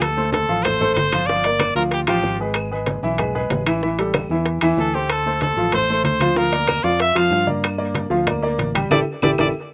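Driving and passionate, this salsa excerpt is carried by a brilliant, forceful trumpet that sits up front with vibrato, stating its melody from the start, pausing at 2.4 seconds and returning at 4.8 seconds. A clear, slightly worn concert grand piano joins almost immediately as accompaniment, present and up front with deep bass and short sustain. Underneath, a dark, round and punchy fingered electric bass anchors the minor-key chord changes. The percussion blends ringing metal-shell timbales with a slapback echo, tight high-tuned bongos and thick-skinned, low-tuned congas played with soft hands in the background, while very quiet woody claves sit beneath them. The mix is dry, recorded outdoors with little reverb, and the passage closes with a band accent at 8.9 seconds and a drum fill beginning at 9.2 seconds.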